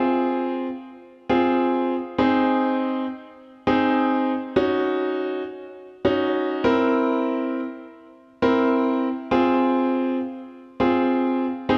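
Nocturnal and melancholic, this short pop excerpt features a solo concert grand piano that sounds clear, smooth and up front, with a deep bass and a vintage touch from its tape echo. The piano plays alone across all 11.8 seconds, moving through Fm, Ab, Ebm7 and C7 before settling back on Fm. A moderate plate reverb and a dark production surround it.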